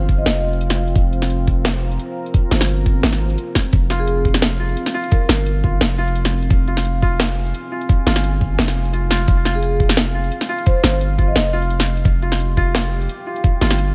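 A half-time drum and bass groove at 173 BPM in 4/4, with a light swing on the sixteenths, drives this dark, spacious piece in F minor, cut from a longer work. Up front, a knocking electronic kick and a layered kit with a cracking snare and metallic hi-hats carry a tape-tinged warmth, re-recorded in a small room. Beneath them a long 808-style bass holds deep sine tones with a fast attack that decays. In the background, a moody, full-bodied pad of detuned unison sawtooth voices with a sub octave sustains chords, softened by chorus and its own reverb and pumping with sidechain. From 3.9 seconds a felt-muted upright piano adds intimate, mellow arpeggios on F4 through tape echo. A vibraphone with soft mallets, heard in a brief touch at the very start, returns in the background with ringing phrases around 4.0 and 9.6 seconds, its slow motor vibrato and boxy character also trailed by tape echo, while the overall mix stays dry and close.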